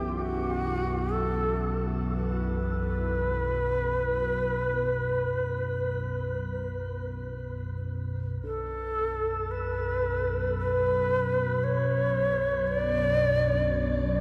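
A breathy bamboo shakuhachi carries the melody up front, its vibrato trailing into shimmer reverb and delay, over a detuned, warbling analog drone that also sits up front and a bright, resonant pad sweeping behind in chorus. This ominous, unsettling dark ambient drone piece in B minor moves at 57 BPM, with a very quiet dark grand piano adding intimate arpeggios with audible action noise, and a barely audible bronze singing bowl ringing metallically until 8.4 seconds. Cut from a longer piece and bathed in a huge reverb, the harmony shifts from Esus2/B to Bm at that point, while an analog synth pad fades out over the opening 8.4 seconds.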